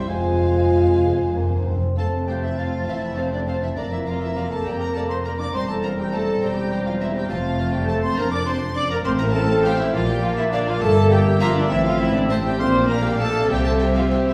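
A spirited, cheerful classical-period symphonic movement in a quick 6/8 at 68 BPM in F major, where a smooth, rich violin section carries the melody over clear oboe, hollow flute, distant clarinet and a second, more expressive violin line, while bassoon, viola and a very quiet French horn section fill in the harmony, cellos and double basses anchor the bass, and hard-mallet timpani sound a fill only from 0.1 to 1.9 seconds, all heard from further back in a wet stone room in this excerpt from a longer piece.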